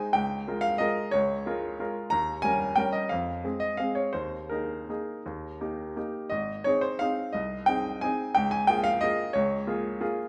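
A brilliant, woody upright piano plays alone and up front throughout this elegant, sparkling classical waltz in 3/4, cut from a longer piece. Its tempo moves freely with rubato between 158 and 193 BPM as it spans Ab1 to Bb5. The polished, short-sustained tone sits in a moderate recital-hall reverb while the harmony passes from Bbm7/Db through Eb7, Fm and Ebsus4 to Eb and Ab, then returns to Bbm7/Db at 8.4 seconds.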